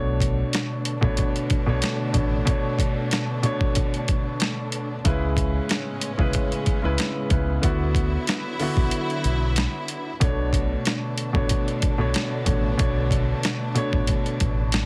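Gritty and reflective, this boom-bap hip-hop excerpt sets a dark, mellow grand piano with audible action noise and cassette-tape coloring over lush bowed strings, a round fingered electric bass and an overdriven sampler-style kit with a thumpy kick that drops out from 8.9 to 10.2 seconds, all under light reverb and a heavily compressed, radio-like sound.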